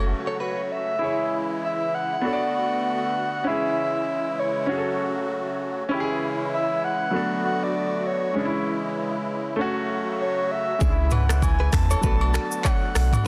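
Afrobeats excerpt at 98 BPM with a hypnotic, sultry swing, where clear baby grand piano and reedy, shimmering musette accordion hold the F#m, C#m and Bm7 changes under a breathy, flute-like synth lead carrying the melody through chorus and delay, a bright, clean electric guitar riff touched with delay flickers in at the start and returns at 10.8 s alongside the round sine sub bass and an up-front electronic afro-pop kit of deep kick, dark hats, snaps, handclaps, rim clicks, shaker, toms and a softly clipped snare, with agogo bells entering in the background at 11.1 s, all in light digital ambience and a dense, heavily limited modern master.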